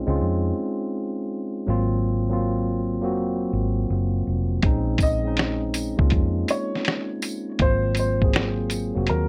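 A hazy, reflective lo-fi hip hop excerpt opens with a mellow, filtered tine electric piano laying a rootless Bbm11 chord and an Ab13 chord over a round, foam-muted fingered electric bass, both sitting up front. At 4.6 seconds a compressed, sampler-style drum kit arrives with a thumpy kick, medium-tuned snare and hi-hat in a swung sixteenth-note feel. At 5.0 seconds a dark, woody upright piano, also low-pass filtered, takes the melody, joined by a jingly tambourine set low in the mix, all under a light reverb.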